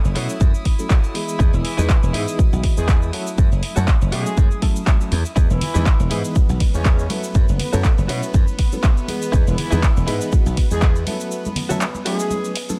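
A joyful, sunny slice of filtered disco house moves at 121 BPM in 4/4 with a light 16th-note swing, cycling between F#m7 and Emaj7. Up front, a layered, punchy electronic kick drives the groove alongside a bright, punchy slap bass, while a tape-warm analog drum machine supplies cabasa, handclaps, hi-hat and ride cymbal that pump against the kick. A reedy electric piano with fast tremolo and phaser comps through the chords, and a clean, compressed direct guitar picks a tremolo-tinged riff in the background. Gut-toned chamber strings hold rich sustained chords from the start, and from 1.5 seconds a distant, roomy horn section with vibrato and octave doubling carries the melody through tape echo. Very quiet tambourine and soft-handed congas join at 5.4 seconds, and the bass drops out at 11.0 seconds as a short break closes the passage in a dry mix.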